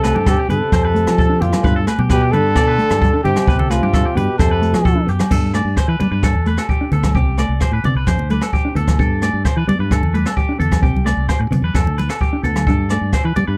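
A breathy, whispered trumpet melody and a clear trombone line open this joyful, danceable highlife guitar band excerpt in G mixolydian at 130 BPM, over an up-front brushed drum kit with dark cymbals and a boomy kick, a round, punchy fingered bass, twangy picked arpeggios with tape echo on clean electric guitar, a mellow fingered electric guitar set back in the mix, and ringing agogo bells and hard-hand congas in the background, with the horns stopping around 5 seconds to leave the rhythm section grooving in a dry sound.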